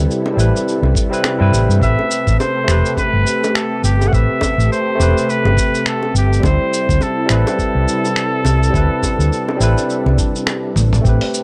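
Sunset chillout at 104 BPM in 4/4, relaxed and wistful, with a lazy swing on the sixteenths and a tuning slightly under standard pitch. A barky tine electric piano, lightly overdriven through a combo amp with tape echo, carries the accompaniment, while a silky string machine with phaser and ensemble chorus sustains slow-attack chords in the background. Up front, a round, dark hollow-body short-scale bass, played with the fingers, anchors the low end. The dusty soul sampler-style kit of cabasa, finger snaps, hi-hat and toms sounds gritty and tape-warm, joined by a thumpy electronic kick from 1.0 seconds and tight, high-tuned bongos sitting in the background. A clear flugelhorn with vibrato enters at 1.8 seconds to sing the solo melody through tape echo over chords moving from a rootless D9sus4 to Am9 and on to D13sus4, and a drum fill at 10.8 seconds closes this short cut from a longer piece. 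The sound is dry and raw, with little reverb and a hardware-driven edge.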